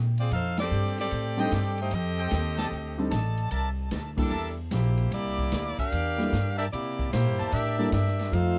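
A swung 4/4 groove drives this joyful, brassy big band swing excerpt, with a woody, growly pizzicato upright bass up front from the start, a distant, roomy drum kit with dark cymbals and a boomy kick, and an edgy, close-miked saxophone section carrying the melody over F13 and C13 harmonies. From 1.4 seconds a mellow concert grand piano accompanies beneath clear, tight trumpet stabs touched with tape echo, while the full band hits accents along the way. A smooth-topped trombone section adds a second line only at the very end, from 8.3 seconds, all in a dry room with little reverb.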